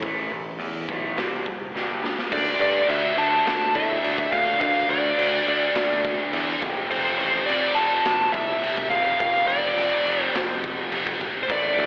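This driving, heavy hard rock excerpt at 105 BPM opens on a double-tracked, overdriven guitar riff with slapback echo, a growly picked electric bass and a raw garage drum kit, whose saturated, gritty kick, snare, hi-hat and crash sit up front in a bright stone room. After a drum fill at 1.7 seconds, a biting lead guitar enters at 2.3 seconds, its overdriven melody carrying its own slapback echo through to the end. The cut sounds like a live gig heard through the venue's PA, with recital hall reverb and a telephone-like tone.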